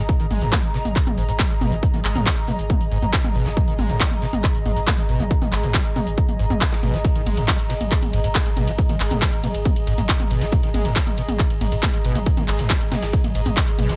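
A dry, gritty hardware recording carries this relentless, intense stretch of driving peak-time techno, with an up-front, tape-warm electronic kick at its core and a layered techno kit of handclaps, smooth hats, ride cymbal, shaker and toms pumping against it. Beneath, a thick, saturated sub bass holds G#1 through tube saturation, sidechain pumping and a low-pass filter, while a squelchy, resonant sawtooth acid line screams with distortion, ensemble chorus, analog delay and a sweeping filter. High above, an airy, breathy pad with chorus hovers softly, and a very quiet acoustic rock kit adds faint hi-hat and snare from a big room.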